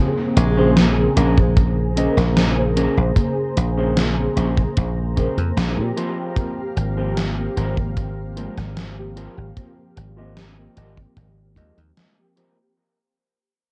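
Echo-heavy and cassette-tinged with light small-room ambience, this hazy, nostalgic vaporwave excerpt at 75 BPM sets detuned, warbling lo-fi synth keys over a lush unison pad in the background, while a dark, clean, fingered electric guitar riff runs through chorus and analog delay, a dry, foam-muted thumbed slap bass carries a filter sweep, a gated 80s digital drum machine supplies hi-hat and gated-reverb snare, a tight kick drum enters at 1.4 seconds, and the chords move from Bbm9 to Abmaj13 at 6.0 seconds under a fade-out.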